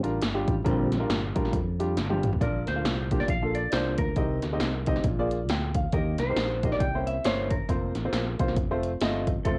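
A dark, clean lap steel guitar played with fingerpicks and slide carries the melody from 2.4 seconds in this uplifting, jubilant uptempo gospel excerpt, swinging in 4/4 after a drum fill. Beneath it, a clear, up-front concert grand piano with deep bass and short sustain, a bright, growly fingered electric bass and a punchy analog drum machine (kick, snare, hi-hat and toms, re-recorded in a large room) drive the groove. A lightly overdriven tonewheel organ with key click, chorus vibrato and slow rotary speaker adds sustained chords from 0.7 to 1.0 seconds, with cassette-tape colouring and light reverb lending a homespun feel.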